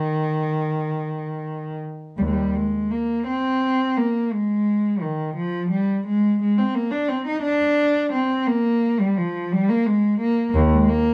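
A lone bowed cello, up front yet slightly distant in tone, plays a flowing, solemn baroque-style suite movement in 6/8 at about 57 BPM in dotted quarters, ranging from Eb2 to Eb4 with expressive vibrato, portamento and free rubato over uneven beats, tuned to A4 = 439 Hz, in a warm, dark production with light reverb, all in a short passage cut from a longer piece.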